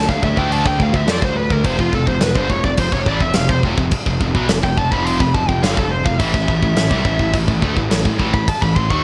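Bright 1980s-style digital production with light reverb frames this dark, heavy metal fragment at 106 BPM, tuned to A4 = 435 Hz, where a warm, high-gain lead guitar solos over D5, F5 and Am chords, backed by a scooped, high-gain guitar in the background, a compressed distorted guitar and a double-tracked tight distorted guitar both very quiet, a growly fuzz bass with overdrive, and an up-front big rock drum kit entering at 0.1 s with punchy kick, medium-tuned snare, crash cymbal and gated reverb.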